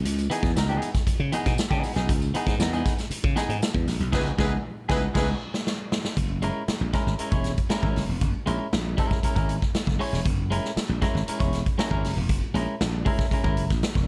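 The recording is dry, with little reverb, and this short funk cut, lifted from a longer piece, moves in a straight, steady four with a cool, hypnotic pull. A bright, growly slap bass sits up front, while an acoustic drum kit in a big, natural-sounding room drives with a punchy kick, a medium-tuned snare, hi-hat and crash cymbal. A clean, picked electric guitar, compressed and twangy with a plate reverb, keeps up the accompaniment, and a jingly tambourine stays in the background through the opening few seconds. At 4.1 seconds the band hits an accent, and a tight, smooth-topped horn section with light vibrato and a plate reverb adds a brief second line before the drums play a fill at 5.2 seconds. At 6.2 seconds the harmony moves from C#m9 to F#9 for the second half of the cut.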